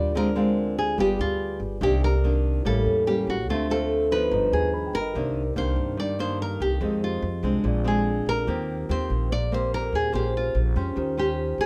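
A pair of fingerpicked nylon-string guitars, an upright bass and a tine electric piano all sound together from the opening moment of this intimate, wistful bossa nova fragment, cut from a longer piece and moving in a straight four. Up front, one classical guitar carries the melody with a dark tone, while the second guitar fingerpicks the accompaniment, its finger squeaks audible against a warm sound. The pizzicato upright bass sits equally forward, woody and steel-strung, anchoring the low end. Further back, the clean, mellow electric piano fills in the harmony and adds a brief fill from 4.5 to 5.1 seconds, just as the opening minor-key progression of Dm7b5, G7b9 and Cm9 gives way at 5.1 seconds to a new section moving through Cm9, Fm7, Bb9 and Eb6. Light reverb lends the close, small-group sound a gentle sense of space.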